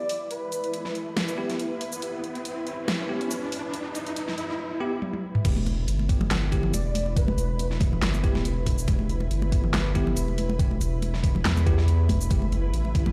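Deep dubstep at 140 BPM in E minor with a swung half-time feel, dark and cavernous, this excerpt opens with a build-up of a granular cloud pad, an electronic riser, a breathy flute-like synth lead with chorus and dub echo, and bell-like tine electric piano stabs under a filter sweep, before a drum fill leads into the drop at 5.5 seconds, where a knocking overdriven kick, a thick saturated sub bass up front, and background congas join the dubstep kit's huge snare and bright hats in a bare, reverberant room.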